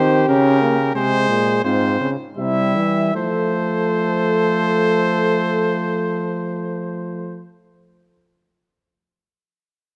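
Classical imitative canzona for brass ensemble in 3/4, solemn yet driving and cut from a longer piece, in which a bright trumpet with light vibrato carries the melody up front over a mellow, soft-attacked flugelhorn second line, a distant, roomy euphonium accompaniment and a warm bass trombone holding the low end up front, the pace slowing through the first 3.1 seconds before the harmony arrives on F, heard through close, detailed microphones in a moderate stage reverb.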